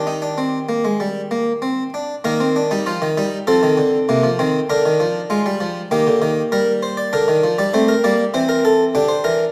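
A round, plucked French-style harpsichord on a single set of strings sits up front alone throughout this contemplative, solemn baroque-style three-part fugue in straight 4/4, moving from its opening section into a second at 2.2 seconds across a span from C3 to D5, all bathed in a wet recital-hall reverb before it cuts off mid-piece at 9.5 seconds.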